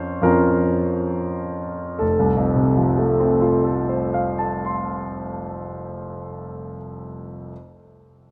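A clear, open concert grand piano sits up front with a deep bass, playing a passionate, lyrical romantic character piece alone in 6/8 with free rubato, spanning F1 to C6. Its opening slows over the first 2.0 seconds on a B-flat minor chord over F before settling onto F major as a new section begins. A long, wet cathedral reverb of 4.5 seconds surrounds this brief fragment cut from a longer work.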